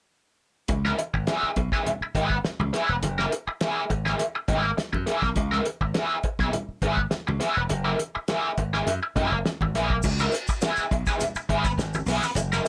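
A lightly reverberant, up-front mix opens this funky, driving funk excerpt at 103 BPM in a straight 4/4, set in C# dorian and tuned slightly low to A4 = 438 Hz. A biting overdriven guitar carries the accompaniment from 0.7 seconds, its picked tone thickened by tube saturation and colored by wah and harmonic tremolo, while a punchy, bright slap bass sits prominently underneath in a low register. A cloth-damped, thuddy drum kit gives a dry, dark foundation of fat snare, tight kick, hi-hat and dark crash cymbal with a rolled-off top. Ringing, medium-tuned congas add a small-room presence in the background. The harmony alternates between C#m7 and F#9, then settles on a rootless C#m7 at 10.0 seconds, where a grainy, mellow tube shaker joins from a distant, large-room space until the cut at 12.7 seconds.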